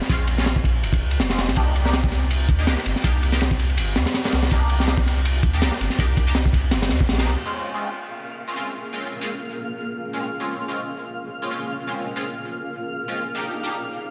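An atmospheric, frenetic drum and bass excerpt in Bb dorian at 163 BPM, where a crunchy, saturated breakbeat kit with punchy kick, high-tuned snare and dark ride drives the opening alongside a round, soft dub sub bass, both stopping around 7.3 seconds. A nasal, band-passed sawtooth chord stab with phaser, ensemble chorus and dub echo runs throughout over Bbm7 and Cm7 harmony. From around 8 seconds a cloudy, blurred granular pad and a twinkling, sparkling granular texture with octave-up shimmer join the stab in reverb, all set in a light small-room ambience.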